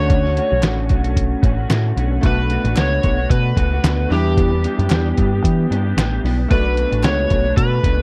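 Sunny and hazy, this lightly swung indie bedroom-pop excerpt sets a bright, overdriven slide guitar melody over a round, punchy dub bass and muffled, pitched-down sampler drums, with a slightly broken-up guitar through a small old amp, glossy chorused retro synth keys in the background and hollow group handclaps joining at 0.6 s, captured in a dry, close 1970s-style studio sound as the chords move from Bm7 to Em7 and back.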